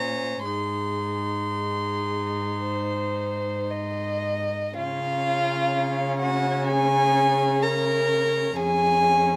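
Lyrical and tender, this slow romantic movement for string quartet unfolds in Db major at a rubato 55-68 BPM in 4/4, tuned to A4 = 435 Hz and cut from a longer piece. The first violin carries the melody up front, its sul tasto bowing pure and floating with a soft attack, while the second violin traces a darker, woody line beneath it, close and colored by vibrato. The viola fills in a quiet, hushed accompaniment, and the cello anchors the bass with an intimate tone touched by light vibrato. All four players bow throughout the full 9.4 seconds, with the harmony resting on Ab before settling onto Db at 4.8 seconds, where a second section begins, and then Db/F at 8.6 seconds. A light reverb gives the ensemble a gentle sense of space.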